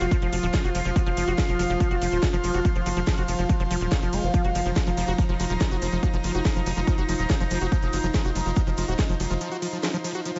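A heavy, overdriven electronic kick sits up front in this hypnotic, alien psychedelic trance excerpt at 142 BPM, alongside a punchy, tight sequencer bass with a mellow filter pluck and a squelchy, resonant liquid acid bass riff carrying chorus and analog delay. An overtone-sweeping drone with ring modulation holds sustained chords on an F5 harmony while an airy, breathy pad hovers in the background, both pumping with sidechain compression, and a layered techno kit with cracking snare, smooth hats and ride adds drive alongside a faint, grainy tube shaker. The dreamy mix is soaked in huge ambient reverb; the kick drops out at 9.1 s, and the sequencer bass stops for a break at 9.4 s while the remaining parts carry on.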